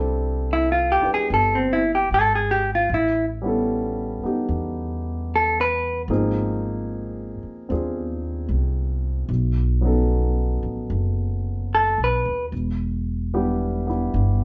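A grand piano and upright bass open this romantic, intimate jazz ballad together, with the piano's natural tone carrying audible action noise and the pizzicato bass sounding woody and growly on its steel strings. The tempo is an unhurried 75 BPM in 4/4 with a swung eighth-note feel, tuned slightly low to A4 = 436 Hz. At 0.5 seconds a vintage hollow-body electric guitar takes the melody, clean, picked and compressed with a dark tone, and it sits loudest in the mix. The guitar drops out at 6.0 seconds while piano and bass carry on, then returns briefly around 11.7 seconds. The harmony moves from C6/9 through A9, Ab6, B7 and Em7. All three instruments sit up front in a moderate studio reverb, capturing a band playing live in one room, in a short cut from a longer piece.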